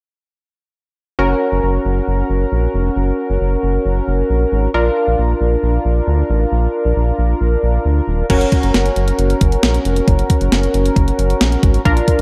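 Synth-pop at 135 BPM in 4/4, this bright yet wistful fragment of a longer piece opens with a punchy, nasal polysynth comp, filter-plucked and treated with chorus, over a round, deep analog bass that blends sawtooth and sine tones with ring modulation, moving between Gb and Bb chords. At 8.3 seconds a clean 12-bit drum machine enters, overdriven and sampler-style, with a thumpy kick, medium-tuned snare, hi-hat and crash. The whole sits in a moderate concert-hall reverb within a dark, warm production.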